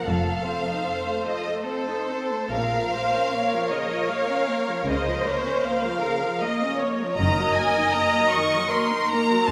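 A slow, solemn classical movement for string orchestra opens with the violins and violas sounding together. The first violins carry a yearning, expressive melody up front with vibrato, while a second violin section holds a focused inner line and the violas add a lush, smooth accompaniment close beneath them. From 0.1 seconds, a bowed bass enters: the cellos sound clear and sit in the background, joined by a rich double bass section. The music moves at 77 BPM in 3/4 with a flexible, rubato feel in Bb minor, its harmony passing from F7 to Bbm, then Bbm/Db and Ebm/Gb. The cellos and basses drop out at 7.8 seconds, leaving the upper strings to carry on until 9.5 seconds, all heard within a church-like space whose reverb lingers for about 2.7 seconds, in a passage cut from a longer piece.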